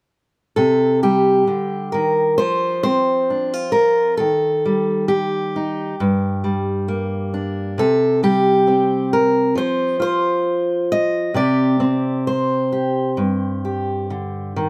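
A straight, unhurried 4/4 pulse at 67 BPM carries this haunting, reflective folk passage in C dorian, cut from a longer piece, where a lone fingerpicked steel-string acoustic guitar sits up front with a warm, auditorium-like body in moderate studio reverb, moving from 0.6 to 14.7 seconds through Cmadd9, F5, Eb, Gm and C5, passing through a chordless stretch, and settling on Csus2.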